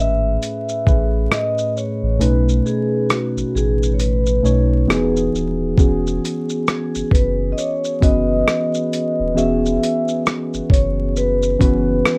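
A soft-malleted vibraphone rings out a dreamy, mellow melody over muted, felt-like synth keys treated with chorus and a low-pass filter, a round sub bass, and a gritty, tape-warm sampler drum kit of thumpy kick, hi-hat, rim click and shaker that enters at 0.4 seconds, its kick dropping out from 2.2 to 5.8 seconds, in this swung 67 BPM lo-fi hip hop excerpt in E major, set in light reverb with vinyl crackle.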